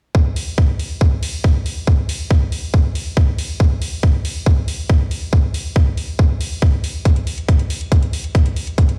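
Trance in a driving, psychedelic mood, this short cut from a longer piece sets a tight, layered electronic kick drum up front from 0.1 seconds, joined at 0.4 seconds by metallic electronic hi-hats, both replayed through a big sound system in a bare stone room that adds only a touch of reverb.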